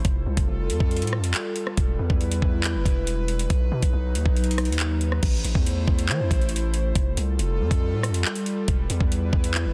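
A half-time drill groove in 4/4 drives this menacing, dark hip hop clip, taken from a longer piece. An electronic drill kit sits up front, with a knocking kick, metallic hi-hats, handclaps, rim clicks and a crash cymbal carrying the beat through the whole clip. Beneath it, a deep, sine-like 808-style bass holds long notes with a fast attack that decays, reaching down low and sitting prominently in the mix. Further back, an airy, breathy pad with a detuned, noise-tinged softness and a gentle chorus sustains the chords, moving from Fadd9 through Em and B before shifting to Am at 5.2 seconds and circling back to Fadd9 and Em. The sound is dry and close, with a dense, heavily limited modern master that keeps the mood brooding.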